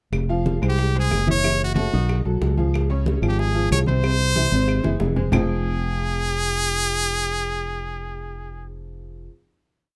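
Danceable, passionate salsa in which a round, punchy fingered electric bass plays an up-front tumbao that anticipates the chords, while background congas with slaps and open strokes, tight high-tuned bongos in steady eighths with hand bell, and woody claves on a two-bar time line drive the groove until a drum fill leads them out at 5.4 seconds. A worn, slightly detuned upright piano plays a montuno in octaves, and a forceful, close-miked trumpet carries a motif-based solo melody with vibrato. The band settles onto a final chord from 5.3 seconds in a moderate small room.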